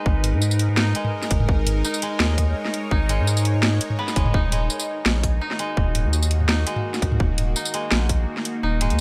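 A thick, saturated sub bass sits up front in this dark, cinematic half-time drum and bass fragment, beside a tight, overdriven electronic kick and a layered kit of cracking snare, bright hats, tambourine and toms. A tense, detuned string-like drone pumps with phaser and vibrato alongside mellow, woody koto arpeggios carried on tape echo, as the harmony moves from G#m to D#m at 4.3 seconds.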